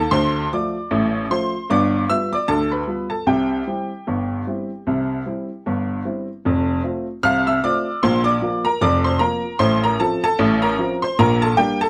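A lightly swung 2/4 at 76 BPM gives this playful, lively ragtime passage its bounce, carried by a solo upright piano with a worn, woody, slightly detuned tone that sits up front and spans F1 to F6. Cut from a longer piece and set in F major with the tuning raised to A4 = 444 Hz, it moves through Dm, G7 and C before a new section at 6.5 seconds turns to F, Bb, F/A and Gm/Bb. Close, detailed miking and a touch of light reverb keep the instrument clear and open.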